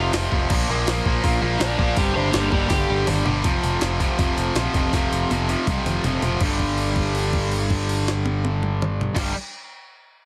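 Dry, dense and heavily limited, this short punk rock cut from a longer piece carries the grainy artefacts of lossy compression and an urgent, aggressive mood in a straight, driving feel. A dark, hollow-bodied overdriven guitar opens with a picked solo melody soaked in tape echo, which drops away by 3.1 seconds. Beneath it, a double-tracked, up-front distorted guitar grinds out a picked riff over power chords moving from F5 to Bb5 and a G minor chord, then returning to F5 and settling on G5. A punchy, direct electric bass with a crisp edge holds down the low end. The drums have a gritty, pitched-up, sampler-style character, with a thumpy kick, a medium-tuned snare, hi-hat, crash and toms, plus fills that drive the changes. A held note rings from 6.4 to 9.2 seconds to close the excerpt.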